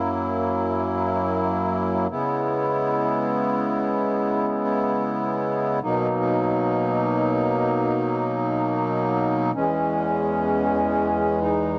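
A close-miked hand-pumped harmonium carries this ethereal, melancholic hip hop fragment entirely on its own, its reedy, nasal tone sitting full and up front. The reeds have a breathing quality that makes each chord feel alive, and the instrument stays in a low-to-middle register. The harmony drifts from F#7 to C#m7 at 2.1 seconds, then to Bmaj7 and finally E6, giving the piece a wistful, unresolved colour. A moderate studio reverb lends a small sense of space around the otherwise dry reed sound, and the cassette tape recording adds a worn, intimate character. Lifted from a longer piece, the passage runs for 11.8 seconds as a single unbroken section.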